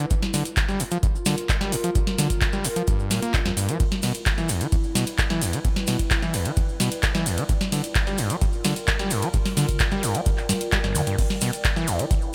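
An overdriven acid bass sits up front, its squelchy, resonant sawtooth riff pushed through distortion, tube saturation and digital delay, with a filter sweep and sidechain pumping giving it a gritty, trippy bite. This short acid house cut in straight 4/4 keeps that riff running from the start to about 12.1 seconds while the harmony shifts between Gm7 and Em7. Beneath it, a warbling, detuned pad of square, triangle and sawtooth tones fades in slowly and hangs on with a long release, its lo-fi, nostalgic haze colored by chorus, phaser, built-in reverb and pumping of its own. A booming analog drum machine supplies crash, ride, toms, handclaps, a tonal snare and metallic hats, with gated reverb and a short room on the snare, clap and hats, while a deep electronic kick anchors the groove up front. A grainy acoustic cabasa rustles in the background from 0.1 seconds, and the whole mix carries a bright 1980s-style digital sheen with light reverb.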